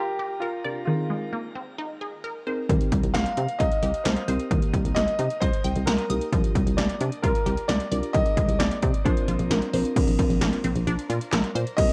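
A natural-toned grand piano carries the melody of this melancholic yet driving synth-pop excerpt at 132 BPM, bathed in shimmer reverb alongside a bright, squelchy blip pluck that spins arpeggios through phaser and analog delay, while muted, dark felt-like synth keys with chorus enter at 0.6 seconds. At 2.7 seconds a punchy, round FM bass and up-front 80s electronic drums arrive together, with a gated snare, metallic hats, handclaps, crash and a hard-hitting kick. The chords move from Gm7 through Cm7 to a closing Bbadd9, and the whole take carries a dry, gritty cassette-tape character.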